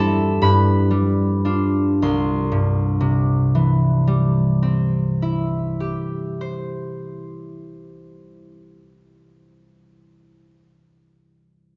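This classical solo harp piece is peaceful and dreamy, moving in a slow, rubato 6/8 at about 40 beats per minute in C major. The concert harp plays alone throughout its 9.5 seconds, fingerpicked and up front, with a bright, ringing acoustic tone spanning C2 to E6. The opening slows from 0.0 to 2.0 seconds as a G7 chord at 0.4 seconds settles onto C at 2.0 seconds, where a new passage begins and carries on to 8.1 seconds. A generous recital hall reverb, lasting about 1.6 seconds, surrounds the instrument, while the recording's highest frequencies stop at 7.6 kHz. Cut from a longer work, the excerpt feels like a brief, suspended moment of calm.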